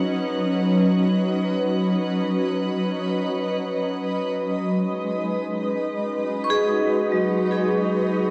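A worn, warbly cassette haze and a wet concert-hall reverb wrap this reflective, serene ambient fragment in free time, where a blurred, evolving granular cloud pad sits up front holding sustained chords over a C#9sus4, a hard-mallet vibraphone rings out metallic arpeggios through tape echo, and a bright chamber violin section adds an earthy, lightly vibrato-tinged texture until 4.3 seconds.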